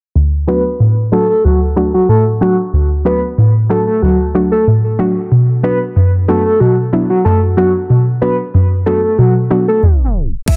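A dense, heavily limited modern mix with light digital reverb opens this hypnotic, bouncy dancehall excerpt at 93 BPM in B minor, moving from D to Bm under a filter sweep. A soft, round pluck with a dark, decaying tone carries the accompaniment with chorus, while a full-bodied, octave-layered synth lead with vibrato, phaser and tape echo sings the melody above it. A tape stop takes hold from 9.8 seconds, and a deep house drum kit lands a deep kick and crash at 10.5 seconds.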